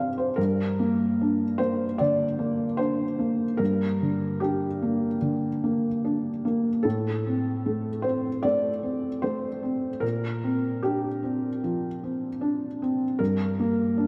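A felt-muted upright piano opens this melancholic, intimate fragment of neoclassical minimalist piano, playing alone from the start to 14.1 seconds. The tempo sits around 75 BPM in 4/4, but the feel is rubato, with the harmony in G minor moving from Gm to Amadd11 at 6.8 seconds, then to Bbadd9 at 10.0 seconds, and back to Gm at 13.2 seconds. The instrument is tuned to A4 = 436 Hz and ranges from G2 to A5. Its tone is soft and mellow, a little boxy and placed up front, with audible action noise and a subtle chorus. A lush hall reverb with a 2.0-second decay soaks the mix and gives the close, hushed playing a dreamy haze.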